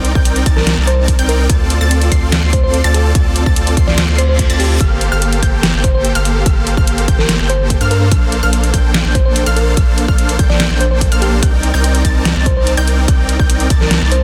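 A thick, saturated sub bass sits up front, pumping with sidechain under huge detuned supersaw chords that carry tape echo in this dreamy, lush future bass cut at 145 BPM in a half-time feel in G minor, moving through Cm9, Dm7, Gm11 and Bbmaj9. A punchy electronic kick enters at 0.2 s beside an overdriven dubstep kit of hi-hat and deep snare, while a bell-like FM electric piano carries a mellow melody from 0.6 s with chorus and dub echo. High, bright pluck arpeggios sit in the background, and a reverse cymbal rises at 4.2 s, all set in light digital ambience with a dense, heavily limited master.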